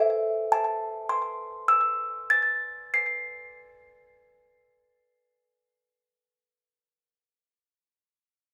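A delicate, tinkling music box carries this fragile, wistful classical lullaby alone from the first moment to 6.8 seconds, its plucked tones sitting up front in a straight triple metre. A slapback echo trails the music box, and a light reverb lends the small, boxy room a soft, mellow glow. The clip is cut from a longer piece.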